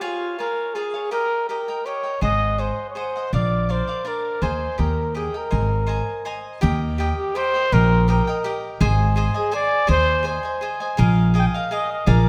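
A brisk, straight 3/4 lilt at 165 BPM drives this proud, festive mariachi passage from a longer piece, where an up-front dark trumpet sings the solo melody in a classical style with light vibrato, a soft attack and a smooth top over crisp, bright picked cavaquinho accompaniment, joined at 2.2 s by a woody, thumpy pizzicato upright bass on gut strings, all set in a moderate concert hall reverb as the key moves from Ab major to Eb major at 6.6 s.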